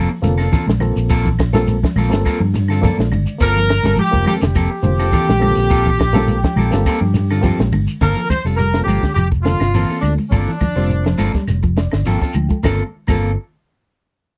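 Afrobeat in G minor at 104 BPM, this hypnotic, intense passage is cut from a longer piece and rides a lightly swung sixteenth-note feel over a Gm11 opening chord. A round, up-front fingered electric bass anchors the groove alongside a compact cocktail drum kit with dark cymbals, a high-tuned snare and a punchy kick, joined by a grainy, close shekere, while congas with a thick-skinned, soft-handed tone and woody claves sit further back. A dark, clean electric guitar plays low arpeggios with slapback echo, a scooped, picked second guitar adds higher stabs, and a barky, reedy electric piano, lightly overdriven and shimmering with fast tremolo, supplies accompaniment and fills at 2.5 seconds and 11.5 seconds. At 3.4 seconds a tight, bright horn section takes the melody, and a clear, very quiet trumpet plays a distant, roomy second line alongside it until 7.4 seconds. The sound is dry and close, in the manner of a 1970s studio recording.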